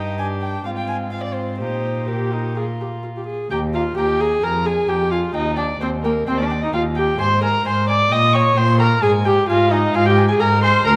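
A moderate concert-hall reverb surrounds this spirited, cheerful passage from a quick classical-period string quartet movement in Eb major at 130 BPM, with a faint mains hum underneath. Gut-strung period instruments play throughout: the cello's rich bass and the viola's airy, nasal accompaniment sit up front, while one dark violin carries the melody from the background and the other, reedy and distant, spins a second line that reaches up to Eb6. A new section begins at 3.5 s, and the harmony moves through Abadd9 and Bbm69 before arriving on Abmaj13.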